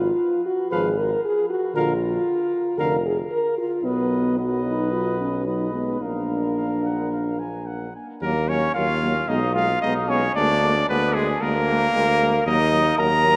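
In a rubato 4/4 at 113 BPM, this grave, solemn fragment of classical brass quintet music opens with a mellow, vintage French horn and a present tuba bass, joined at 0.7 s by an up-front trumpet melody with light vibrato, a soft-attacked flugelhorn second line and a close-miked trombone in the background, the ensemble ringing through the long, wet reverb of a vast cathedral.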